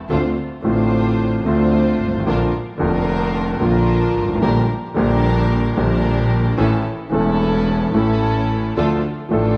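From the first moment, an intimate grand piano with audible action noise sits up front in a dramatic, passionate rubato tango in D minor at 111 BPM, joined throughout by a clear, focused bowed double bass with vibrato and by distant, reedy stabs from a dark, gut-string studio string section in period style, all moving through Dm7, Bb, Gm/Bb and A back to Dm in a moderate concert hall reverb across this short cut from a longer piece.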